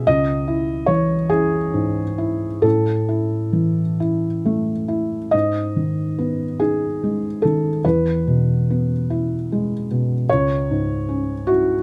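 Neoclassical minimalist piano in G# phrygian, wistful and intimate, moving slowly at 44-50 BPM in dotted quarters through a rubato 6/8. A single felt-muted upright piano plays alone across the whole 11.8 seconds, its thick felt giving a soft, mellow, dark tone that sits up front. The range spans C#2 to D#5. The harmony moves from C#m to A5, then a repeated phrase begins at 5.3 seconds on G#m, passing through E and returning to C#m. Close, detailed microphones and light reverb keep the sound natural, and the passage is cut from a longer piece.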